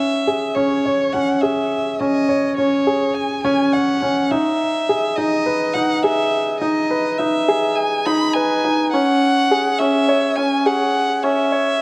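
A grand piano riff with short sustain and a lone bowed violin melody, expressive and smooth on top with vibrato and portamento, open this hopeful, tender piano and strings electronica excerpt together at 104 BPM, both up front in a dark, warm production with a wet echo-chamber reverb, building up over C#m and Emaj7 across its 11.8 seconds.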